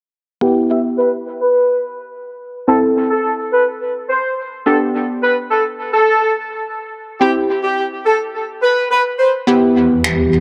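Dance-pop at 106 BPM in E minor, this bittersweet, driving excerpt sets a warbling analog pluck with chorus, dub echo and a filter sweep under a clear, vibrato-laced horn section melody over Em, Am, G and C, before a blurred granular cloud pad enters at 9.8 seconds and overdriven electronic finger snaps flicker at 10.0 seconds in an echo-heavy mix with spring reverb.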